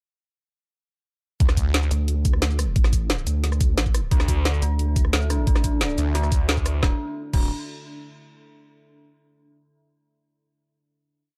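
A swirling, thick detuned saw bass sits up front in this tense, aggressive piece of dark technical drum and bass at 177 BPM, its phased, tube-saturated tone carved into chopped phrases that pump against the kick. Beside it, a nasal, wobbling vowel-sweep bass with chorus runs modulated phrases of changing wobble speed, answering the other bass. The drop arrives at 1.4 seconds with an overdriven, knocking electronic kick in a broken-beat pattern and a tight drum kit of woody snare, bright closed hats, rim, shaker and crash. From 4.1 seconds an eerie, inharmonic FM bell repeats a 16-step arpeggio sequence through chorus and dub echo, and soon a deep, moody pad enters with slow-attack chords soaked in its own reverb. The track closes on a final chord from 6.8 seconds, set in a digital ambience.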